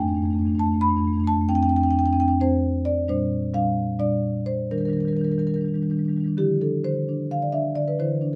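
Contemporary classical music for solo marimba, hypnotic and reflective, moving in a rubato 7/8 at roughly 246-269 BPM counted in eighths, in D minor. Played with soft mallets on rosewood bars, the marimba sounds woody, mellow and round, sitting up front across a range from F2 to B5 in a dark production with moderate studio reverb. Its harmonies pass from F69 through Csus2/F, Bb69 and Ebmaj7 before arriving at Dm9 at 6.4 seconds in this short cut from a longer piece.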